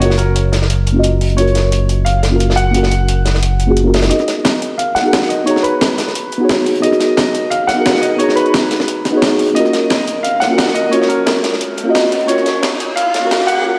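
Soulful and lush, this liquid drum and bass excerpt at 176 BPM in G# dorian pairs a clear, worn grand piano melody, treated with low-pass filtering and analog delay, with deep, detuned chord stabs thickened by chorus and delay over F#maj7 and G#m9 harmonies. A smooth sawtooth-and-triangle synth bass sits up front until 4.1 seconds, while two breakbeat kits drive the hi-hats and snares: one compressed, pitched up and tape-tinged, the other a saturated acoustic kit with a rolled-off top and high-passed hats, snare and room. From 4.1 seconds a build-up sweeps a filter across the piano, and a background riser joins at 10.4 seconds, all bathed in a dreamy, reverb-soaked hall.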